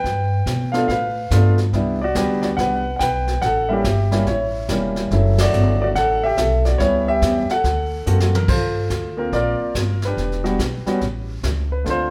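From the first beat, a clear, up-front concert grand piano carries the melody over a woody, thumpy pizzicato upright bass and a brushed jazz kit with dark cymbals, a high-tuned snare and a punchy kick, forming a cool, smoky jazz piano trio that swings at 142 BPM in 4/4, played live in a large studio room with moderate reverb, marked by a band accent at 5.3 seconds and a drum fill from 8.1 to 8.5 seconds before the harmony moves to Gm11 in this excerpt from a longer piece.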